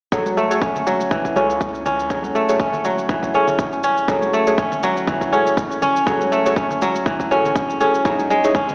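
A punchy, layered electronic kick sits up front at 121 BPM in 4/4 with a 56% swing on the 16ths, joined by a tape-warm shaker and bright, hard-handed congas in the background, giving this earthy, spiritual afro house excerpt in F# minor its steady pulse. Over it, a crisp, ringing fingerpicked kora plays arpeggios up front with sidechain pumping, low-pass filtering and tape echo, while soft, nasal chord stabs with chorus, cassette tape colour and a filter sweep move from F#madd9 to C#madd9/F# at 8.1 seconds. A round, dark analog bass pumps low in the background, and the whole piece carries a lush hall reverb, the boom of a big sound system in a bare room and a thin AM radio tint.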